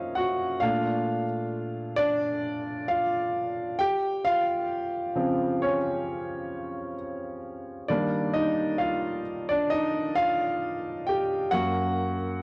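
Soulful and sensual, this short R&B piano piece, cut from a longer work, unfolds at a slow 66 BPM in Bb major with a light sixteenth-note swing, as a warm, up-front grand piano plays alone from the very start through lush major-seventh and ninth chords, Gbmaj7, Bbmaj7, Dbmaj7 and Ebmaj9, spanning Gb2 to G5, set in a lush hall reverb and captured as a home cassette recording.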